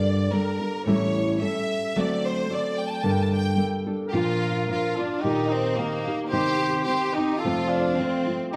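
Romantic and festive, this short mariachi folk excerpt in 2/4 opens with a bright, lush violin section carrying the melody up front, with vibrato, over a dark, thumb-plucked nylon-string guitar that supplies classical-style accompaniment. At 4.1 seconds the harmony shifts to B-flat major and a mellow trumpet enters on a second line, distant and roomy with light vibrato. A wet recital-hall reverb surrounds the ensemble in a dark production.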